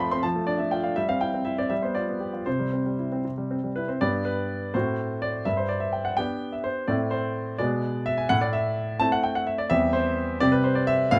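Playful and cheerful, this short classical-period sonatina passage in C major unfolds in 6/8 at roughly 77-86 BPM, counted in dotted quarters, with a flexible rubato feel. A solo concert grand piano carries everything, ranging from a deep bass at E2 up to C6, and it sits up front with an intimate, polished character, short sustain and audible action noise that brings the listener close to the instrument. The opening phrase moves through Dm/F, C/G and G7 to settle on C by 2.5 seconds. A new section begins at 4.0 seconds, leaning toward G, then turning to A minor with diminished passing harmonies before returning through C/E to close on a bare C5 at 10.4 seconds. Light reverb and a dark, warm production frame the clear piano tone, and the clip is taken from a longer piece.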